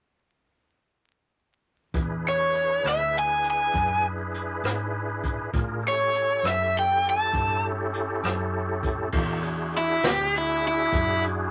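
A light reverb and a bed of vinyl crackle frame this laid-back, swaggering slow blues in 12/8 at 67 BPM in E mixolydian, cut from a longer piece, moving from E7 to A7 and landing on E9. From 1.9 s a clear tonewheel organ holds sustained chords with chorus vibrato, key click and fast rotary speaker, over a dark, round, foam-muted vintage electric bass and a small-room brush kit with dark cymbals, a medium-tuned snare, punchy kick, hi-hat, rim clicks and crash. At 2.3 s an up-front, overdriven guitar, picked and compressed with a warm edge, takes the melody between E4 and A5.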